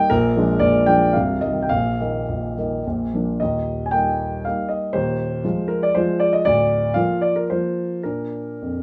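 A warm, open concert grand piano plays alone and up front, its deep bass anchoring a proud, rustic romantic classical dance in 3/4 at 101-127 BPM with dotted rhythms and supple rubato in Eb major, moving from an opening phrase over Bb7 and Cm to a second phrase at 3.4 s that settles on Eb and closes on Bb, heard in light reverb in this brief fragment of a longer piece.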